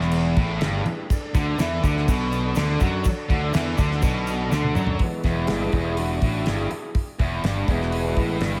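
A straight 4/4 groove at 123 BPM drives this swaggering classic rock passage, cut from a longer piece, with a damped 70s drum kit up front: fat snare, tight kick, hi-hat, crash cymbal and toms, capped by a fill from 4.5 to 5.0 seconds. A growling fingered electric bass with overdrive holds down the low end, while three guitars stack the riff in the same register: a picked overdriven guitar with slapback echo, a tight distorted guitar in the background, and a thick, double-tracked fuzz guitar that drops out at 5.0 seconds. An overdriven tonewheel organ, full and gritty through a slow rotary speaker and chorus vibrato, sustains chords over the harmony as it moves from E to D5 and back to E, then takes a solo from 5.0 seconds to the close. A grainy egg shaker sits distant in the background for part of the opening stretch. Lush hall reverb and a touch of small-room ambience give the whole band a big arena sound.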